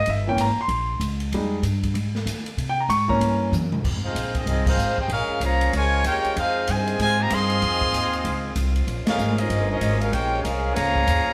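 Dramatic and brassy, this big band swing excerpt in F minor moves at a brisk 191 BPM with a swing feel, captured as a band playing live in one room with moderate studio reverb. It opens with a short grand piano solo, the piano's tone full and deep in the bass, backed by a woody, thumpy pizzicato upright bass and a polished drum kit with a punchy kick, hi-hat, ride and crash cymbals. A drum fill at 3.5 seconds closes the opening, and at 3.8 seconds a bright saxophone section with a smooth top enters, holding sustained chords in the background. At 4.0 seconds the brass arrive: a clear, tight trumpet section carries the melody up front with light vibrato, while a veiled, cup-muted trombone section plays a soft second line from a distance. The harmony turns between Fm7, C7b9 and Bbm7, and the full band punches out accents at 4.6 and 9.0 seconds before the passage is cut off.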